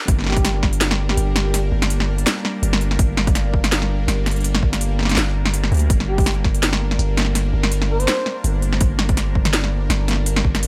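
Half-time drum and bass in G minor at 165 BPM, this dark, heavy passage is cut from a longer piece and sits on a sustained G minor chord throughout its drop. A deep, sine-toned 808-style bass with a fast attack and tube saturation holds long decaying notes up front. The layered electronic kit pairs a cracking snare with crisp, tape-warm hats in a small room, while an overdriven, hard-clipped electronic kick drops in and out, returning at 3.0 seconds. Beneath it, a tense, string-like drone of detuned sawtooths with a noise layer swells in slowly, colored by phaser, vibrato, built-in reverb and sidechain pumping. A soft, breathy flute-like lead with a sub octave, chorus and dub echo floats in the background, appearing at 0.3 seconds and again at 6.1 seconds.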